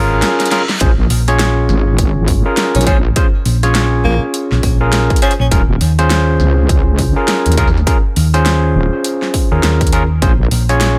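A swung 4/4 groove at 102 BPM, with 60% swing on the sixteenths, drives this playful, gritty glitch hop clip in Bb minor, cut from a longer piece. It opens on a rootless Eb7sus4 as a reverse cymbal sounds in the background and a dubstep kit with a huge snare and metallic hats enters at 0.2 seconds, landing a drum fill before the punchy, tape-warm electronic kick arrives at 0.8 seconds. Two basses sit up front: a dark, round hollow-body electric bass fingered low in the register, and a heavy sawtooth-and-sine wobble bass, saturated and compressed, with chorus. Barky, overdriven electric piano stabs played through a combo amp pump against the sidechain and trail off in tape echo, while the harmony moves between Bbm7 and Eb7sus4. Between 2.8 and 5.5 seconds a breathy tenor saxophone takes a brief jazz-style solo, with vibrato, scooped notes and its own tape echo, all set in a digital ambience.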